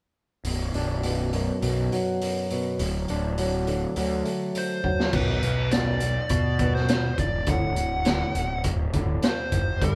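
Quiet-loud alternative rock in B phrygian at 102 BPM in a straight 4/4, this brooding, cathartic excerpt is cut from a longer piece, with a band playing live in one room under a moderate studio reverb. From 0.4 seconds a raw garage drum kit sits up front with crash, hi-hat, a punchy kick and a medium-tuned snare, its saturated, gritty sound rolled off at the top. Alongside it, an overdriven fuzz bass picks out a bright, punchy low line, while from 0.5 seconds a plugged-in acoustic guitar fingerpicks dark, boxy swing-style arpeggios. The harmony moves from Bm to D, and a drum fill at 4.8 seconds leads into the second section at 5.1 seconds. From 4.6 seconds a compressed, distorted fuzz lead guitar carries a picked melody with a warm edge over the Bm and D changes.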